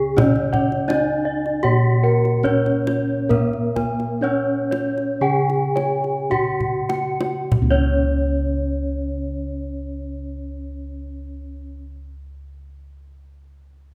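In a straight four-beat pulse that slows through the first 7.5 seconds, this ceremonial, serene Javanese gamelan fragment in pelog tuning sets an airy, shimmering bronze metallophone melody above round, dry bossed gongs in the bass, with mid-forward bossed gong arpeggios, band-limited vintage-toned metallophone arpeggios, and a tight, hard-handed kendang whose fill from 6.3 to 7.5 seconds leads into a new section before the drum stops at 8.1 seconds, all heard in a reverberant recital hall.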